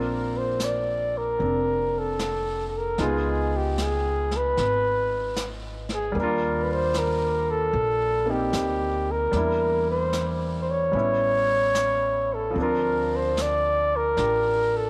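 A wet spring reverb with a long tail surrounds this intimate, romantic jazz ballad excerpt in Bb major, which moves at a slow 75 BPM with a swung 4/4 feel through chords such as Bbmaj9, Db9, Ebmaj9 and Dm7. Up front, a warm, soft-attacked flugelhorn carries the solo melody. Beneath it, a bright concert grand piano with audible action noise and a woody pizzicato upright bass accompany from the start, and a brushed drum kit with snare and hi-hat joins at 0.6 seconds.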